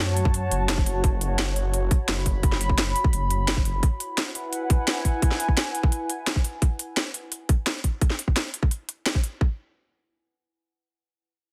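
A tense, futuristic dark technical drum and bass excerpt at 172 BPM opens on a growling, detuned saw bass with tube saturation and a filter sweep, a barely audible downlifter, and a warbling, lo-fi tape-like pad with chorus, built-in reverb and sidechain pumping, while a very quiet, moody analog pad holds chords until 1.0 s; a tight electronic kick and a drum kit of cracking snare and crisp hats arrive up front, the bass stops at 3.8 s as the harmony moves from F#m to Eadd9, and the drums carry on to about 9.5 s in a dense, heavily limited mix with light reverb.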